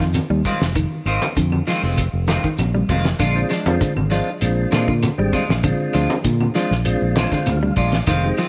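Joyful and hypnotic, this short afrobeat cut from a longer piece moves at 98 BPM in a straight 4/4, sitting in Bb mixolydian as the harmony shifts from Fm7 to Bb7 at 3.2 seconds. A fingered electric bass, direct and amped, sits up front with a warm tone, anchoring the groove beneath a cloth-damped drum kit whose fat snare, tight kick and hi-hat thud with a rolled-off top. Two clean electric guitars fill out the texture: one plays dark, fingered arpeggios in the background, while the other, warm and picked, delivers stabs bathed in lush chorus. Low-tuned congas ring softly under the hands with a vintage, band-limited character, joined in the background by a grainy shekere and woody, close claves. At 3.4 seconds a mellow, round tonewheel organ enters with third-harmonic percussion and a slow rotary speaker, adding a fill from 6.9 to 8.1 seconds. The whole band sits in a small room with light reverb and a softened, dark top end.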